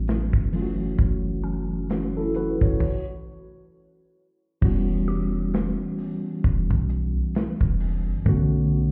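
Heard muffled as if through a wall, with club reverb, this short cut from a longer contemporary R&B track drifts at 66 BPM in E dorian with a swung, longing late-night mood. A mellow tine electric piano and a deep, boomy 808-style bass sit up front with a tight-kicked acoustic drum kit of crash, hi-hat and snare, moving from A13 and F#m7 toward Em69, and the groove halts for a stop between 2.8 and 4.6 seconds. Tucked in the background from 1.4 seconds, a woody, warbling FM mallet-like pluck adds a vintage shimmer through chorus and delay.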